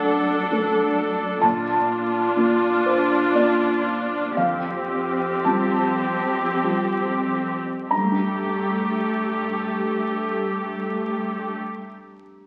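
Cinematic and longing in a rubato 3/4 that slows through its first eight seconds, this short, moving excerpt sets a soft, thick-felt upright piano beside an up-front viola section with light vibrato and a dark, expressive cello section in the background, all bathed in wet scoring-stage reverb and the crackle of a very old 78 rpm record, with the strings falling away at 11.6 s and the piano ringing on until 12.5 s.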